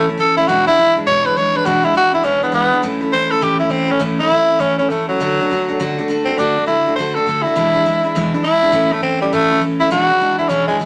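Swung eighths drive this fast, rollicking retro rock in 4/4, with a full-bodied, picked steel-string acoustic guitar picking through chords that circle around E7, A and D. Up front, a raspy, gritty tenor saxophone carries the melody with pop-style vibrato, then breaks into a solo at 4.0 s that runs until the end. A moderate club reverb surrounds the pair in this short cut from a longer piece.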